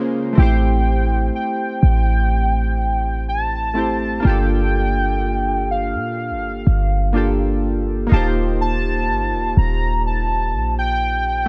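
Soaked in a digital ambience, this slow, sensual R&B fragment is cut from a longer piece and moves at 62 BPM in a straight 4/4 with a late-night mood. Warm analog keys open alone at 0.0 s, their round, detuned tone blending pulse, sawtooth and triangle waves, colored by ring modulation, a filter sweep and chorus, each note striking quickly and then decaying. At 0.4 s a velvety synth lead and a clean 808-style bass enter together. The lead sings high and smooth, its unison sawtooth and triangle layers sustained after a fast attack and shimmering with chorus and vibrato. Underneath, the boomy sine bass sits up front with a mellow, deep punch that fades after each hit, while the harmony drifts from Am7 through Gm7 to Eb6.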